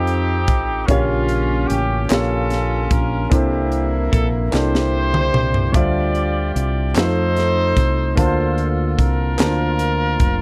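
Reverent and hopeful, this slow gospel passage in a straight 6/8 is cut from a longer piece. A warm, vintage horn section carries the melody up front with a light vibrato and a jazz-style ensemble blend. Beneath it, an intimate upright piano supplies woody accompaniment, its action noise audible, while a dark, round fingered electric bass sits up front, direct and amped. A polished fusion drum kit with a high-tuned snare and a punchy kick plays a fill between 4.5 and 5.7 seconds, and a group handclap adds crisp human claps from 2.1 seconds. The harmony moves from F7 through Bbm6, C13, Dm11 and back to F7 before settling on Bbmaj9, all captured in a dry, close 1970s-style studio sound with a faint mains hum.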